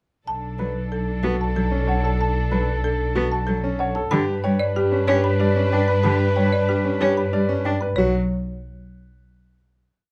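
At 0.3 s a woody, dry marimba sets off a repeated short melodic cell, joined by a bowed double bass section holding long, up-front notes, a smooth-topped soprano saxophone swelling on held notes, and a rich string section sustaining chords in this brief, urgent and hypnotic minimalist classical piece in B minor at 187 BPM in 6/4. From 0.6 s a bowed cello adds its own repeated cell with vibrato and portamento, and a clear concert grand piano circles through arpeggios. The harmony moves from Bm7 to G at 4.1 s before settling on a final B5 chord at 8.0 s, all captured with close, detailed microphones and light reverb.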